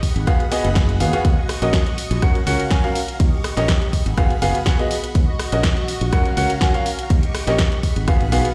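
Heard through a big sound system in a bare stone room with light digital reverb, this bittersweet, energetic piano house excerpt runs at 123 BPM in Eb minor, cycling through Abm7, Ebm7, Gbmaj7 and Eb7. A clear, woody upright piano riff with long sustain and tape echo sits up front beside a punchy layered electronic kick and a growly, direct fingered electric bass, the bass pumping with sidechain along with the piano. A house kit of bright hi-hats, rim clicks and punchy snare drives underneath, while shimmering vintage string-machine violins hold soft-attack sustained chords through an ensemble chorus.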